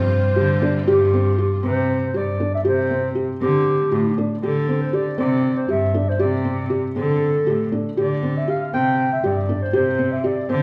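Contemporary instrumental chamber music in an uneven 7/8 meter, this excerpt moves at 237 BPM counted in eighths with a straight feel in C major, carrying a restless yet hopeful mood. A breathy clarinet carries the melody throughout, its dark subtone, scooped notes and soft attacks giving it a whispered, jazz-style intimacy with vibrato. Beneath it, a felt-muted upright piano plays soft, mellow arpeggios with short sustain and audible action noise, while a rich cello holds the bass line, its bowed tone biting and nasal with an earthy, boxy character and light vibrato. A clear symphonic string section opens with sustained chords that stop at 1.6 seconds, their smooth top and intense sound giving way as the harmony settles into alternating Csus2 and D7sus4 chords. The ensemble sits in a recital hall reverb, heard from further back in the room, though the clarinet and cello stay up front.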